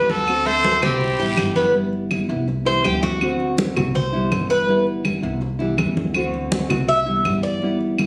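Relaxed and sunny, this excerpt of Cuban son and guajira moves at 164 BPM in 4/4. It opens with a clear, punchy trumpet melody up front over a dark, lush, very quiet bowed violin section, both of which stop at 1.5 s. Fingerpicked nylon-string guitar with a full-bodied classical tone, pizzicato upright bass on steel strings, bright low-tuned congas and woody claves carry the groove, while a raspy guiro sits in the background until 1.7 s, when the picked, metallic, double-stringed tres takes a solo over chords moving among D7, Cmaj7 and G6, the whole piece captured on a phone in the room with moderate studio reverb and compression.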